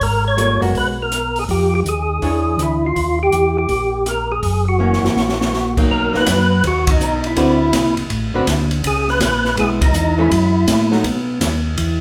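A greasy, swinging soul jazz organ trio opens at a brisk 163 BPM, with a fat, lightly overdriven tonewheel organ carrying the melody up front through a slow rotary speaker, its third-harmonic percussion, key click and chorus vibrato giving it bite, over a smooth, clean organ bass line and an acoustic drum kit with dark cymbals and a boomy kick, all swung in 4/4. A dark, clean, picked hollow-body electric archtop guitar adds accompaniment from 0.4 s, and after a drum fill the tune settles into B major at 5.9 s, with band accents punctuating the changes from Bmaj7 through D13 and C#m7. The whole band sounds live in one room, bathed in a lush large-studio reverb, in this short cut from a longer performance.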